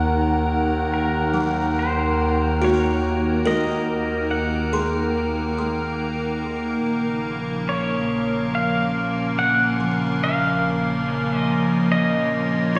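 An evolving, detuned wavetable pad with chorus sits up front, sustaining chords over a soft, bowed chamber double bass section in this spacious, reflective ambient fragment, where a clean slide pedal steel fades in with a diffuse delayed melody from 0.9 seconds and a buzzing, woody kalimba adds background arpeggios from 1.3 seconds before it and the bass fade away, all bathed in a wet concert hall reverb.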